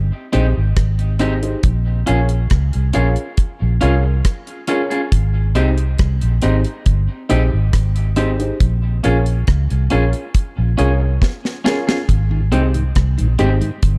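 Roots reggae at 69 BPM in Ab major, this warm, sunny excerpt rides a round, foam-muted electric bass and a dry drum kit with a high-tuned snare and tight kick up front, while a slightly broken-up, twangy guitar with spring reverb and tape echo and a woody, slightly detuned upright piano playing stabs move between Abmaj7 and Bbm7, a drum fill arrives at 11.2 seconds, and a clean tonewheel organ with key click and slow rotary speaker slips in at 12.3 seconds in the background of a dark, small-room production.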